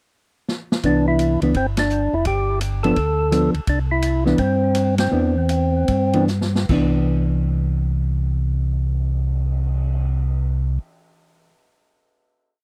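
A swung 4/4 groove with a ride cymbal pattern, punchy kick and a drum fill into the downbeat at 0.8 seconds opens this short, bluesy soul jazz organ trio piece, where a round, dark tonewheel organ with key click plays a two-feel bass through a slow rotary speaker, a clean hollow-body electric guitar adds syncopated fingered comping in three- and four-note chord shapes, and a fat, lightly overdriven percussive organ with third harmonic percussion, vibrato and tape echo sings motif-based song phrases up front over Cmaj9 and G7 before the band slows down from 3.7 seconds and settles on a final chord at 6.7 seconds, all in a dry, close 1970s-style studio sound.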